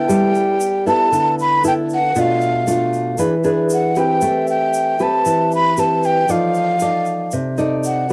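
A breathy, mellow silver concert flute carries the melody up front in this short bossa nova excerpt, its straight, tongued tone close-miked and slightly unsteady, with a cassette-tape colour. Beneath it, a fingerpicked nylon-string guitar plays a classical-style accompaniment, also up front and taped, its warm tone moving through chords from G69 to Bm7b5, E7, Am9 and F13. A grainy, bright tube shaker sits far back in the mix from 0.1 s, sounding as if caught in a live room. The mood is romantic and sunny, with a straight feel. The home cassette recording in a small booth gives the sound a close, modest ambience along with some lossy compression artefacts, and the passage is cut from a longer piece.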